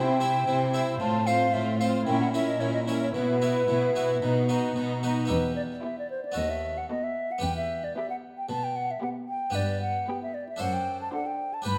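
Classical baroque-style concerto movement in E minor at 113 BPM, festive and lively, in which a hollow, up-front concert flute carries the melody while a gut-string violin section also plays melody in the background, a second violin section adds a reedy second line, a nasal, dark viola section and a brilliant, plucked Flemish-style harpsichord supply accompaniment, and a distant cello section plays the bass, all heard within a wet recital hall reverb.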